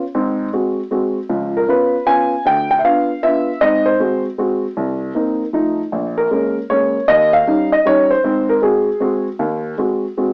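Swung eighth notes roll through a lilting three-beat waltz feel in this short jazz fragment, cut from a longer piece. A lone upright piano carries everything from 0.0 to 10.3 seconds, ranging from a deep Bb1 up to Ab5, with a dark, woody, mellow tone and a vintage, intimate character. It sits up front, and the noise of its action is audible. The harmony cycles through dominant-seventh colors, moving from Ab7 to Db7, passing through Cm7, F7, Bbm7 and Eb7, and settling back on Ab7. The mood is playful and warm. The home cassette recording lends the piano a tape-worn, AM-radio quality, framed by a moderate studio reverb.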